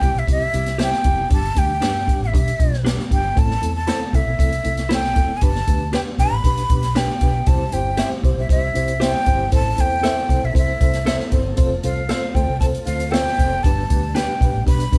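A breathy metal flute carries the melody from the very start of this joyful, uplifting excerpt of uptempo 1960s-style soul in C major at 117 BPM, its vibrato, soft attack and lifted highs sitting up front. Beneath it, a reedy, worn and slightly out-of-tune electric piano plays accompaniment with a fast tremolo through its built-in speakers. A dark, round, foam-muted electric bass and an up-front swinging big-band drum kit, with a punchy kick, a medium-tuned snare and hi-hat, drive a straight 4/4 feel. A bright, compressed guitar, picked and recorded direct, adds clean stabs from 0.8 seconds, and at 7.5 seconds a very quiet, mellow, flute-like tonewheel organ joins with sustained chords through a fast rotary speaker. The chords move from C through G, Am and G, then C, Am, F and G, all captured as a band playing live together in a small room with moderate reverb.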